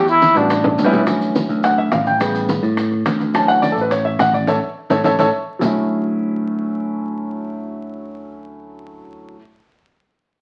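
A brief, dark and breathy trumpet phrase with vibrato opens this lively, sophisticated Afro-Cuban jazz excerpt at 211 BPM in D major, over up-front picked electric bass, ringing low-tuned congas, round dry bongos and grainy, distant maracas, with a drum fill at 0.2 s. The intimate concert grand piano, with audible action noise and long sustain, takes a solo from 1.1 s over Dmaj7 and A7 changes, and the band hits an accent before the percussion stops at 5.7 s. Wet studio reverb and the crackle of a very old 78 rpm record give the recording a vintage character.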